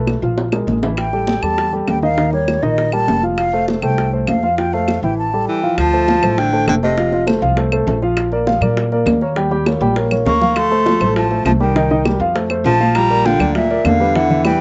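A danceable Afro-Cuban jazz groove comes from woody claves, soft-handed round bongos with slapback echo and bright, distant congas in the background, under a dark, up-front grand piano accompanying with slapback echo and a thumpy pizzicato upright bass on gut strings. A breathy, hollow concert flute with vibrato and slapback echo carries the sophisticated melody from 1.0 s, joined at 5.5 s by a smooth-topped baritone saxophone on a low second line; both pause before a drum fill near 9.8 s and then return. The outdoor recording has little reverb and a dulled top end, and this passage is cut from a longer piece.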